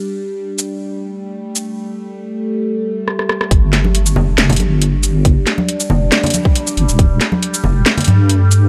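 A cavernous digital ambience surrounds this short cut from a longer deep dubstep track, set at 138 BPM in a half-time 4/4 feel with a meditative mood. It opens on a resonant, wave-folded drone whose sawtooth, sine and triangle layers carry moving overtones and a moving notch. The drone holds a G5 chord with a slow attack, chorus and its own reverb, while a filter sweep runs over it and over the garage drum kit. That kit enters at 0.6 seconds with a cracking snare, warm hats, rim click and shaker, placed up front after a small-room re-recording. A drum fill leads into the drop at 3.5 seconds, where a tight, layered electronic kick and a deep, dark wobble bass arrive together, both sitting prominently up front. The bass, built from triangle and sine tones with a fast attack, is compressed and sustained and thickened with chorus and tube saturation, and ringing congas, close and dry yet sent through a dub echo, join just after to add acoustic texture.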